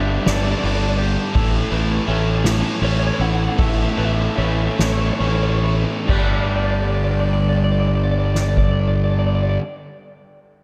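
A cut from a longer, cinematic and euphoric post-rock piece in a straight 6/8 opens on a dark, slightly broken-up guitar melody with slapback echo, set over a growling, punchy bass that sits up front and two background riff guitars, one fuzzy and bright, the other overdriven, both carrying slapback echo. An ethereal, airy pad holds very quiet chords while a twangy clean guitar and a felt-muted upright piano weave soft arpeggios, and a soft-mallet drum kit with dark cymbals and a boomy kick joins at 0.3 seconds. The harmony moves from Gadd9 to A as the music slows between 1.4 and 6.1 seconds, then returns to Gadd9, with the piano dropping out at 6.5 seconds, all in a light small-room reverb.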